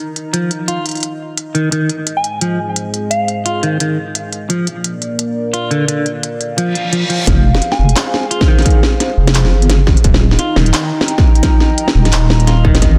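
A dark analog pad opens this half-time drum and bass excerpt, its detuned, ring-modulated chords breathing with sidechain pumping and chorus, and within a fraction of a second an industrial drum kit of clanging snare, smooth hats and handclaps joins alongside a clean, fingered semi-hollow electric guitar playing arpeggios through a low-pass filter and tape echo. The tempo sits at 173 BPM in 4/4 with a swung sixteenth feel, and the mood is spacious yet tense as the harmony moves through Eb, Ab and Bb. A soft, pure FM synth bell drifts in briefly for a melody near 2.2 seconds, coloured by chorus, phaser, delay and the grit of a vintage 12-bit sampler, returning later for a short phrase. A reverse cymbal leads into the drop at 7.3 seconds, where a deep, wobbling bass and a distorted electronic kick arrive up front, shifting the chords to Fm and then Eb. Light reverb surrounds a dense, heavily limited modern master, and the piece is cut from a longer work.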